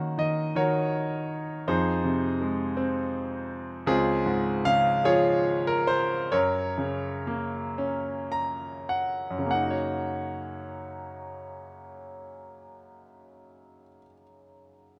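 Classical solo piano in a lyrical, peaceful mood, this 15-second excerpt is cut from a longer piece and moves in a slow, tender 6/8 with a free, rubato feel. A bright concert grand carries everything alone, up front and natural in tone, its brilliant upper register balanced by a deep bass that reaches down to Db2 and climbs as high as Bb5. The harmony drifts from Ebm7 and Fm7 toward Dbmaj7 and then settles on Gb, with the pace slowing from 3.9 seconds as the opening section unfolds. A brief piano fill closes that first section before a new passage begins at 9.5 seconds on a Gb6 chord. Light reverb gives the instrument a gentle sense of space while keeping it close and clear.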